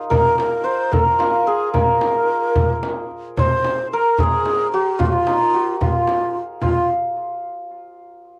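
Soulful and hypnotic, this short cut from a longer Persian modal ensemble piece moves in a straight 6/8 at 74 BPM in F dastgah shur, with a shimmering, ringing hammered santur carrying the melody up front through cassette tape and analog delay, a breathy, bright low ney with vibrato weaving a second line up front beside it, a tight tombak played with hard hands, and a small, distant frame drum, all in light reverb with the feel of a home cassette recording.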